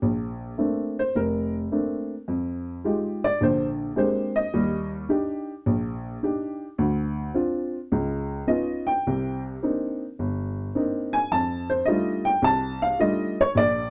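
Swung eighth notes in 4/4 give this brief solo jazz fragment an easy, loping gait, and the mood is relaxed and playful. A lone upright piano carries everything from the first second to the last at 13.9 seconds, reaching from a deep F1 up to A5. Its tone is dark, woody and boxy, slightly detuned, with short sustain that keeps each chord crisp, and it sits up front in the mix under a light touch of reverb. The harmony moves through rich extended chords, opening on Bbmaj9 and passing through Fm9, Bb13, Ebmaj7, Dm7 and Db9 before settling on Cm9 and landing on F13. The dark, warm production suits the unhurried feel, and the clip is cut from a longer piece.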